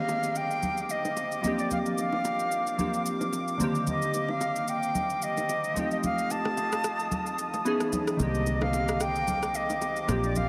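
Amapiano in C dorian at 111 BPM, with a late-night, soulful mood and a gentle 16th-note swing. A pure, reedy silver concert flute carries the melody up front from the start, its soft attack and vibrato trailed by an analog delay. Beneath it, glassy digital keys with a sine-like tone, a fast attack, a decaying sound, a filter sweep and chorus play the accompaniment, while a mellow woodwind section holds smooth, classical-style chords with light vibrato. An overdriven, layered electronic shaker and rim click keep time alongside ringing acoustic bongos and congas set in the background. A punchy, foam-muted fingered electric bass enters at 8.2 seconds, just as the Cm9, Bb6, F9 and Dbm9 progression returns to Cm9. The whole dreamy mix is soaked in a huge ambient reverb, and this cut from a longer piece ends at 10.5 seconds.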